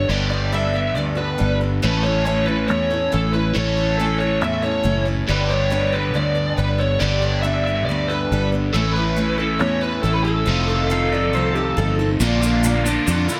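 Light reverb gives this short excerpt of folk rock and heartland rock an open-road warmth at 139 BPM in 4/4, sitting in G lydian as chords move from Gadd9 to A and through F7 to Bb. A smooth, dark overdriven lead guitar carries the melody through tape echo while a double-tracked, compressed electric guitar drives a phased riff over picked steel-string acoustic accompaniment and a round, foam-muted fingered bass up front. An electric slide guitar, slightly broken-up and played with fingerpicks, adds a second line from 10.9 s, and a grainy egg shaker enters at 12.2 s as the passage shifts to a new section.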